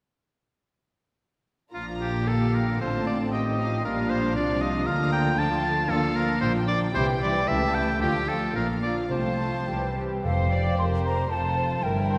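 A quick, cheerful classical-period orchestral movement, spirited yet elastic in its rubato 2/4 pulse, where a bright, up-front oboe carries a second line alongside a veiled, con sordino string body: violins on the melody and a further inner line, violas accompanying, and cellos and double basses sharing the bass, all bowed with vibrato. At 10.2 seconds the oboe gives way to a hollow, airy flute, while the timpani enters briefly from the background. The strings sit dark and muted under a generous, wet concert-hall reverb, in what is clearly a passage cut from a longer piece.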